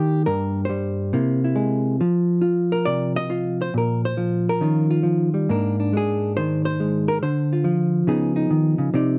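A close, dry sound with the feel of a 1970s studio and a modest booth ambience frames this short cut from a longer solo jazz performance. A single electric hollow-body jazz guitar carries everything, sitting up front with a dark, clean, compressed tone and a fingered touch. The tempo is 139 BPM in 4/4, with a swung eighth-note feel and a rubato looseness, giving the playing a smoky, late-night mood. The guitar ranges from G2 up to Eb5 across the 9.2 seconds, moving through colourful harmony that starts on Gm and passes through chords such as Caug7, Eb9 and Abadd9 before closing on Db9. The result is an intimate moment of solo guitar that feels like a fragment of a larger late-evening set.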